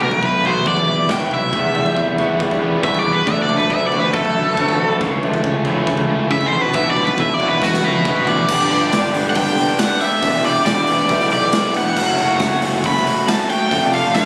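An up-front, cranked stack guitar tears into an overdriven solo with slapback echo from the start of this upbeat, carefree indie rock cut at 138 BPM, backed by a picked raw garage guitar riff, a very quiet crunchy rhythm guitar, a growly fuzz bass in the background and a punchy, saturated garage drum kit in a pumping stone room. A drum fill at 7.6 seconds leads into a new passage at 8.5 seconds, where a very quiet, clean tonewheel organ with slow rotary shimmer slips in beneath the guitars. The whole take has a gritty, phone-in-the-room rawness.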